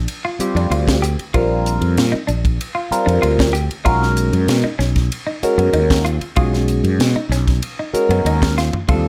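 A dark, round fretless bass opens this slick, soaring electric jazz fusion excerpt, joined almost at once by a dry, tight funk drum kit with a high-tuned snare, picked and compressed clean guitar stabs with subtle chorus, and a barky tine electric piano through a combo amp with phaser, as the harmony moves from Bbadd9 to Bmaj9 at 3.9 seconds before a drum fill at 8.6 seconds, set in a lightly reverberant room.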